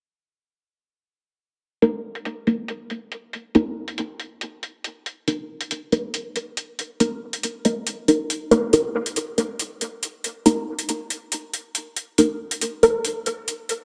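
At 1.8 seconds a filtered dub chord stab and an overdriven electronic hi-hat enter together in this brooding, heavy deep dubstep excerpt with a half-time feel. The stabs are up front, muted and nasal, built from detuned sawtooth tones with a fast attack, short decay and a moving notch, and they are coloured by phaser, subtle chorus and dub echo. Beneath them the layered, metallic hats sit low in the mix, softened by a low-pass filter and small room ambience, and keep going alone from 12.9 to 13.8 seconds, the whole excerpt bathed in a wet echo-chamber reverb.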